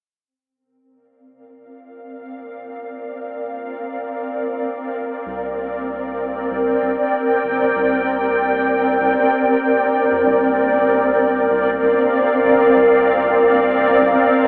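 A cloudy, blurred pad fades in at 1.7 seconds, holding a sustained C9sus4 chord with a slow attack and a long release in this spacious, peaceful slice of ambient dub, cut from a longer piece. The pad sits up front, its detuned, granular texture slowly evolving and softened by its own built-in reverb. At 5.3 seconds a round, deep analog bass enters far beneath it, a dark and faintly nasal tone with a fast attack that holds its notes in the low register. The music moves in an unhurried 4/4 with a light swing on the sixteenths, and a second section begins at 10.3 seconds. The whole recording carries a telephone-like, band-limited sound and is bathed in a drenched spring reverb with a long tail.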